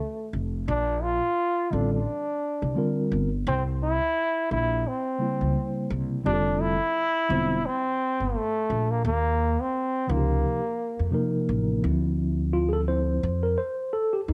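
Hip hop with a nocturnal, smoky swing, where a clear, vintage-toned trombone sings a jazz-style melody with light vibrato until 11.1 s over thumpy pizzicato upright bass on gut strings and a mellow, clean tine electric piano that enters at 1.7 s and takes a solo from 11.8 s, heard in a small room with light reverb.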